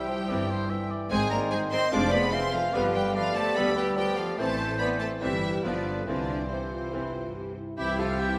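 A lush concert-hall sound with a generous, reverberant tail frames this spirited, dramatic fast romantic orchestral movement, cut from a longer piece, where the rich, vibrato-laden first violins carry the melody over a bright second violin line, a clear, present oboe, a dark clarinet and a pure, mellow flute. Beneath them a close-miked bassoon and a very quiet, distant viola section fill in the accompaniment, mellow French horns hold sustained chords, and smooth bowed cellos and expressive double basses anchor the bass as the harmony moves from C through Ab and G7 to A minor and back home. At 7.8 seconds a soft-attacked trumpet section adds stabs alongside a very quiet, clear trombone section and a smooth-topped tuba for the final moments.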